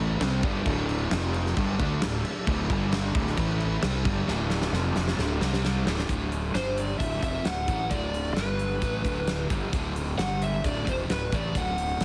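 A huge arena drum kit with a fat snare and punchy kick drives this anthemic, powerful hard rock excerpt, backed by an up-front fuzz fingered bass, two hollow-body overdriven semi-hollow guitars riffing in the background (one through a phaser), a bright double-tracked cranked stack guitar, and a very quiet, gritty tonewheel organ on a slow rotary speaker; the stack guitar and organ stop at 6.1 seconds after a drum fill, and at 6.6 seconds a dark lead guitar through a small cranked amp with slapback echo takes the melody, set in studio reverb with a heavily compressed radio sound.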